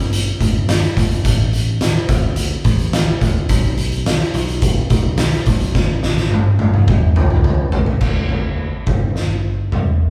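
Quiet-loud alternative rock, angsty and cathartic, moves at 106 BPM in a straight 4/4 in this short excerpt cut from a longer piece. An oversized, low-tuned acoustic drum kit sits up front, dark and saturated with a gritty edge, its fat snare, punchy kick, toms, hi-hat and dark crash cymbal ringing in a bright stone room. Beneath it, a picked electric bass growls from the background between F#1 and D2, its direct tone warm. A drum fill runs from 5.8 to 8.0 seconds, carrying the band out of the opening section and into a half-time passage that lasts until 10.1 seconds. The sound is that of a band playing live in one room, dressed in light reverb.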